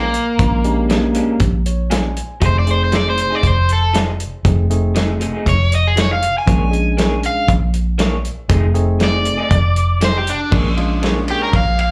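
Straight-eighth soul blues with a swaggering, soulful mood, this short cut from a longer piece sounds like a live gig heard through a club PA, with light reverb around the band. A bright, crunchy overdriven guitar sits up front and solos throughout, carrying the melody with plate reverb and slapback echo. Beneath it, a second electric guitar played through a small old amp adds quieter stabs, its slightly broken-up, lo-fi tone shaded by tremolo, plate reverb and slapback echo. A dark, round, foam-muted fingered bass and a dry soul drum kit, with a tight kick, medium-tuned snare, hi-hat, ride and crash, anchor the groove up front. A clean tine electric piano, heard through its built-in speakers with plate reverb and slapback echo, enters at 0.4 seconds and slips in a fill between 1.4 and 2.4 seconds over the move from Bb7#9 to F7#9.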